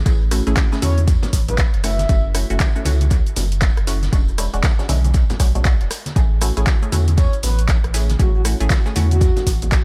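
A sunny deep house excerpt opens on filtered dub chord stabs, muted and phased with pumping dub echo, over a round sub bass that pumps against an overdriven, up-front kick, while a tape-warm analog drum machine adds cabasa, handclaps, hi-hat and rim click, soft-handed congas sit in the background, and a vintage brush kit with snare, hi-hat and tambourine stays far back. A breathy, flute-like synth lead with lush chorus, vibrato and tape echo floats in at 0.8 seconds and again at 7.2 seconds. The chords move from Amaj7 through F#m7 and E13 and back, all in a swung, echo-heavy mix.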